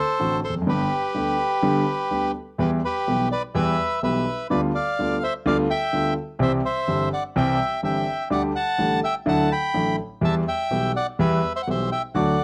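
Rubato and flexible over a 4/4 pulse, this short tango passage, cut from a longer piece, feels playful and nostalgic. A reedy, dark bandoneon carries the melody from the first moment, sitting up front with a mid-forward presence and a touch of plate reverb. A warm grand piano joins at 0.2 seconds as accompaniment, spanning a low bass register up to the middle of the keyboard and sharing the foreground with the bandoneon. After a brief opening that resolves from D7 to G, the harmony shifts at 2.6 seconds into a longer passage moving through Em, G7/D, C and Dadd9 before settling back on Em. Close, detailed microphones and a moderate club reverb give the pair an intimate room sound.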